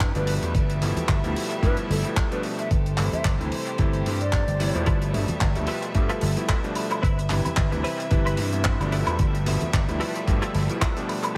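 A gritty, overdriven electronic kick drives this sunny, groovy nu-disco excerpt with a lightly swung feel, joined by a punchy, tube-saturated slap bass, a dark, dry 70s kit of handclaps, hi-hat and woodblock, an electric grand piano with clangy low notes and dub echo, smooth, pumping violin-section chords in the background, soft congas from 1.0 s, a hollow, airy flute melody until 4.9 s, and a twangy, chorused clean guitar riff that enters at 4.9 s, all in an echo-heavy mix with light reverb.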